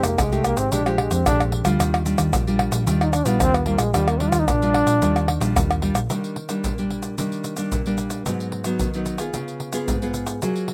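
A straight 4/4 samba-and-choro groove of tube shaker, deep surdo, pandeiro and tamborim, played close and dry with soft hands, drives this joyful, festive fragment, where a jazz-style trombone with light vibrato takes an up-front solo until 5.6 s over a dark, round, hollow-body electric bass that stops at 6.1 s, while a fingerpicked classical nylon-string guitar with slapback echo accompanies throughout, moving from Fm9 and Ebmaj9 to Abm7 and Db7 in the second half, heard outdoors with little reverb.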